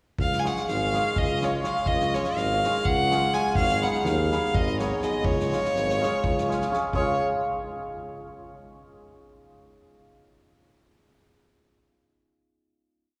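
A clear, up-front violin leads this short, exuberant Balkan wedding-band piece, its smooth, even bowed line built from motifs in sentence-like phrases and colored with vibrato. Just behind it at 0.4 seconds, a bright, shimmering hammered dulcimer rings out close-voiced off-beat chords. A classical-style tuba gives a warm bass of root and fifth on the main beats, while a natural acoustic drum kit with a punchy kick and fat snare drives the lopsided 7/8 pulse. The harmony moves from Db to Abm at 3.6 seconds and back to Db, and the whole piece wraps up on a final chord from 6.9 seconds. A cathedral-like reverb with a long 4.4-second tail washes over the ensemble, giving the virtuosic playing a spacious church-hall glow.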